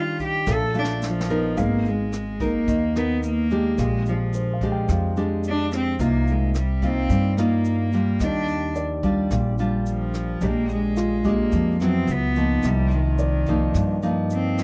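A bowed cello carries the melody up front, its rich, floating sul tasto tone soft in attack yet distant, over a full-bodied, fingerpicked nylon-string guitar in this relaxed, romantic bossa nova at 109 BPM, cut from a longer piece. A brushed drum kit with a boomy kick comes in at 0.2 s alongside a grainy, bright egg shaker in the background. A drum fill begins at 0.5 s as a woody pizzicato upright bass and an intimate grand piano with audible action noise join, the harmony moving through chords such as Abmadd9, Bb13 and Cm11 in a dry, close 1970s-style studio sound.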